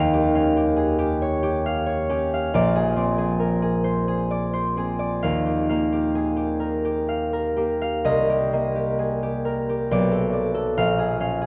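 A concert harp plays alone in this wistful, gentle classical excerpt, its bright, ringing, fingerpicked tone sitting up front and spanning from Bb1 to G5. The slow 3/4 pulse at 66 BPM moves with uneven, rubato beats through lush chords such as Eb9, Bb9 and Cm7, drifting toward Bm7 and Bbm7 near the end. A cathedral reverb with a 4.5-second decay surrounds the harp, giving the dark production a deep, hallowed space.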